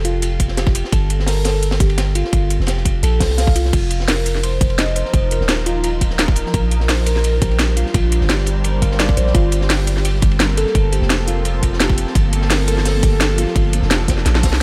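A harp-like synth pluck rings out soft, dark arpeggios with chorus and tape echo over a deep, mellow 808-style bass and two layered drum kits: a crisp, cracking drum and bass kit up front and a gritty, saturated breakbeat kit with dark cymbals and a rolled-off top. This soulful, lush liquid drum and bass excerpt runs at 171 BPM in G minor, with a tight electronic kick joining at 0.4 seconds and chords moving from G9sus4 through F7sus4 and Bb69 to Gm11. At 4.4 seconds a shimmering, ethereal pad fades in slowly with granular texture, phaser and sidechain pumping, and a brief drum fill closes the passage at 14.3 seconds in a light studio reverb.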